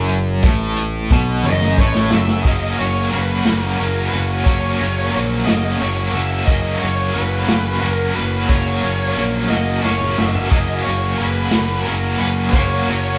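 Psychedelic rock in a hazy, hypnotic 6/8, this excerpt sets a bright, overdriven, double-tracked stack guitar riff with tremolo up front beside a growly picked electric bass, over a punchy vintage drum kit with a rolled-off top that plays fills around 1.4 s and 9.5 s; a jingly tambourine sits in the background only until 2.2 s, and a dark, fuzzy octave lead guitar carries the melody from 1.5 s as the band plays live in one large, reverberant room.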